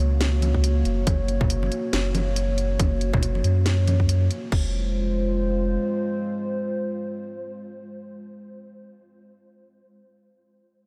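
Brooding and heavy, this short cut from a longer deep dubstep piece moves at 139 BPM in a half-time feel with swung sixteenths, set in F phrygian. A dark, detuned analog pad holds sustained chords across the whole clip, its slow attack and subtle chorus giving it a moody, wave-folded depth, while a round, soft dub sub bass sits up front and stops at 5.8 seconds. A garage drum kit brings a cracking snare, bright hats and a crash alongside a tight, layered electronic kick, both dropping out at 4.6 seconds. Thin-skinned, hard-handed congas with a dub echo hover in the background. The harmony shifts from Gb to Fm at 4.5 seconds, and the whole mix is dreamy and soaked in a huge ambient reverb.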